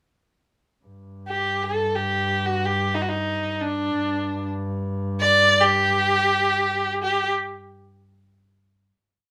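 A moderate studio reverb frames this short, hypnotic and soulful Arabic maqam piece for two bowed players. A dark, nasal double bass with a reedy, period-style gut-string tone sets down a low drone from 0.9 seconds. At 1.3 seconds an up-front violin, rich and focused with vibrato, enters with an ornamented modal melody that carries through to a final note at 7.0 seconds.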